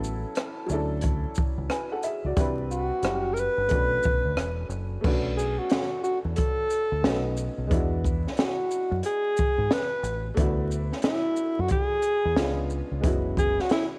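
A breathy alto saxophone with light vibrato and a smooth top takes the jazz-style solo up front from 2.7 seconds, its tone colored by cassette tape. Beneath it, a woody, boxy upright piano with the same tape color supplies mellow, smoky jazz-hop chords, while a dark, round fingered electric bass and an acoustic kit with a boomy kick, high-tuned snare, rim click, shaker and dark cymbals carry a swung hip hop groove. The whole excerpt sits in a small, homey room with vinyl crackle, and its chords shift from airy major ninths into tenser dominant colors before it breaks off.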